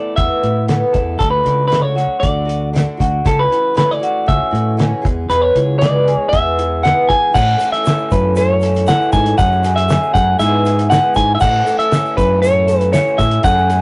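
A clean electric guitar sits up front carrying the melody through this short folk rock and heartland rock excerpt, its lines giving a nostalgic yet hopeful mood. Beneath it, a picked twelve-string acoustic guitar shimmers in the background with a woody, boxy, octave-doubled tone from old strings, while a second electric guitar through a small old amp plays a slightly broken-up, lo-fi riff. A round, direct fingered electric bass sits up front alongside a cloth-damped, thuddy drum kit whose fat snare, tight kick and dark cymbals have a dry, rolled-off top. At 7.4 s a grainy egg shaker joins, distant and placed far back as if in a large room. The whole take has the rough feel of a rehearsal-room recording, with tube saturation, a moderate booth ambience and a capped high end.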